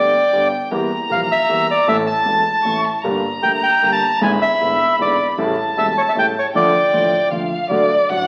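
A bandoneon, violin, piano and upright bass all sound together from the opening moment of this short tango fragment, cut from a longer piece, set in D harmonic minor in 3/4 at 155 BPM with a rubato feel that gives it a tense, sultry mood. The reedy bandoneon carries the melody up front, its tone slightly boxy as if heard in a small room, until it drops out at 7.3 seconds. Above it, a single bowed violin plays a second line with vibrato, soft attacks and expressive portamento slides, its top end smooth and its presence close. Beneath them, a dark, mellow, vintage concert grand supplies intimate accompaniment with deep bass and audible action noise, while a pizzicato upright bass on steel strings adds a woody, thumpy tone at a very quiet level. The harmony moves from G through Edim, A, Gm, E7/G# and A7 to Dm before landing on D at 7.7 seconds. A generous studio reverb and the crackle of a very old 78 rpm record lend the whole an aged haze.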